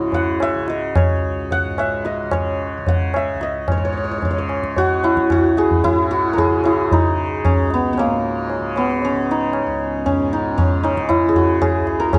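Hindustani classical music in raga Kafi on C#, set at 112 BPM in 4/4 and gradually speeding up, with a longing, solemn mood in this passage cut from a longer piece. An up-front, hammered santur carries the melody with a warm, shimmering ring, while a mellow, softly plucked tanpura sustains a buzzing drone and a high-tuned tabla, close and dry, joins at 0.1 s. Light reverb and close, detailed microphones keep the acoustic instruments clear, and the music moves into a new section at 3.7 s.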